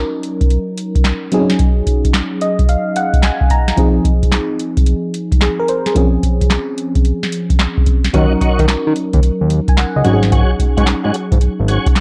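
Warbling, mellow FM electric piano with tremolo opens this bouncy, slick new jack swing excerpt at 110 BPM, dropping a fill at 2.1 seconds over a booming, dry analog drum machine with deep kick, crisp snare, metallic hats and handclaps, moving through Ebm7, Ab7sus4, Fm7 and Dbmaj7 with a 16th-note swing, until at 8.1 seconds a fat, nasal, saturated analog bass and smooth tonewheel organ stabs with key click, chorus vibrato, slow rotary speaker and digital delay join, all in a dark production with light reverb.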